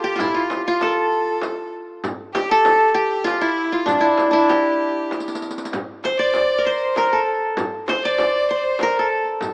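A qanun and a single bowed violin open this warm, stately Arabic maqam ensemble passage together, set in triple metre. The fingerpicked qanun carries the melody up front, its triple strings giving a bright-edged tone, while the violin plays a close, intense second line with vibrato and an airy bow. Darbuka, frame drum and riq enter at 0.2 seconds: the metal-shelled darbuka sounds crisp and deep from the background, the frame drum has a vintage, band-limited tone, and the riq, struck with hard hands, adds jingles from a live room behind the others. A drum fill comes at 5.1 seconds, and the violin stops at 9.3 seconds. Light reverb and a rough home-demo mix give the recording a small-speaker sound, and the clip is cut from a longer piece.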